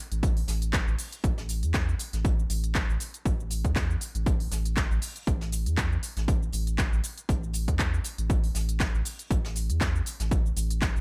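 An up-front, overdriven electronic kick drives this moody, late-night deep house excerpt at 119 BPM in 4/4, its punchy analog thump re-recorded in a large room and swung at 55% on the 16ths. Beneath it, a round, nasal analog bass between A1 and E2 sits dark and sustained with a fast attack, pumping under sidechain compression, while a layered house kit adds crisp hats, handclaps and shaker with studio ambience. Far in the background, an airy jazz brush kit contributes high-passed hi-hat and a medium-tuned snare, its hats also pumping, all in a dry mix with little reverb.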